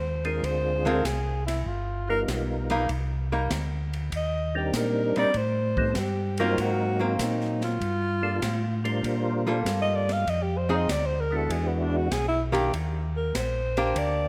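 Swung eighth notes at 98 BPM in 4/4 drive this greasy, soulful soul jazz organ trio excerpt, where a breathy, close-miked alto saxophone solos up front with subtone, scooped notes and vibrato over changes moving from Dm7b5 and G7alt toward Ebmaj7. A round, lightly overdriven tonewheel organ with key click and a stopped rotary speaker carries the bass, while a second, clean organ with third-harmonic percussion and a slow rotary speaker adds melodic lines until 12.1 s. An acoustic drum kit with dark cymbals, a high-tuned snare and a boomy kick sits lower in the balance, and a compressed, hollow-body archtop guitar accompanies from 0.9 s, the whole group set in a lush hall reverb in a rough home-demo mix.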